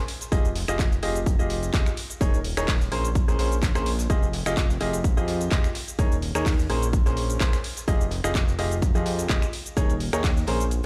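A house drum kit of finger snaps, handclaps, hi-hat and shaker opens this bittersweet, energetic piano house excerpt together with a faint brushed jazz kit on hi-hat and snare, before a bright, woody upright piano riff with delay and sidechain pumping arrives at 0.3 s alongside a punchy, up-front electronic kick and a fat, detuned sawtooth bass that also pumps. The lightly swung groove cycles through Fm9, Eb7sus4 and Bbm9, with the kick and house kit carrying a tape-warmed, small-room character while the mix sounds as if played on a big sound system in a bare room.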